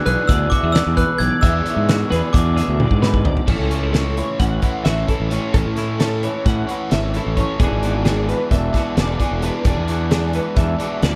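A loose indie drum kit sits up front in this bright, wistful stretch of math rock and midwest emo, its punchy kick, fat snare and dark cymbals breathing in a pumping studio room, with a fill from 2.8 to 3.5 seconds. Beside it, a fuzz-drenched fingered electric bass, also up front, drives the low end with a punchy, overdriven growl at 262 BPM in a straight 9/8, centred on A major. A double-tracked, overdriven electric guitar carries the riff, while a clean, compressed twelve-string electric guitar shimmers through analog chorus as it plays arpeggios, and a warm, fingered twangy electric guitar supplies accompaniment in the background. For the opening 3.2 seconds, a glockenspiel struck with brass mallets rings out the melody, its sparkling, airy, bell-like tone carrying a slapback echo. The harmony moves from E13 to A at 3.5 seconds and later to E9, and the dry, close sound lends the whole passage, cut from a longer piece, an immediate, tightly wound energy.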